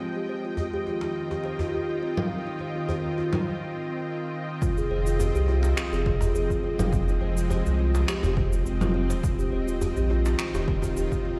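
A punchy, overdriven electronic kick drops in at 4.6 s after a short break, joined by a round, dark sub bass that pumps with sidechain under a woody kalimba arpeggio echoing through delay and a nasal, string-like drone with vibrato and its own reverb. This meditative organic downtempo fragment moves at 104 BPM in F minor with a light sixteenth-note swing, shifting from Eb6 to Fm9 and back, while a vintage, band-limited djembe with metal rattles and tape-warm electronic congas, shaker and finger snaps fill out the groove. The whole mix sits in a concert-hall ambience and sounds as if played through a big system in a bare stone room.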